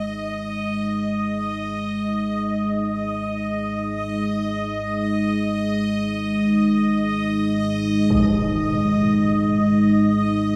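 This dark ambient drone piece unfolds in free time with an ominous, shadowy mood, and it is cut from a longer work. The deep, moody pad sits up front, holding sustained chords built on a G#5 harmony, its detuned sawtooth unison given extra body by a sub octave and softened by chorus. Beneath it, a deep rumbling drone hums low and steady, while a bright, resonant texture bubbles through random filter steps, adding a restless glint above the darker layers. All three parts sound throughout, each with slow attacks and long releases, and the whole mix sits in a drenched cathedral reverb with a decay of 5.6 seconds. At 8.1 seconds, a huge, muffled impact lands in the background, briefly shaking the otherwise suspended atmosphere.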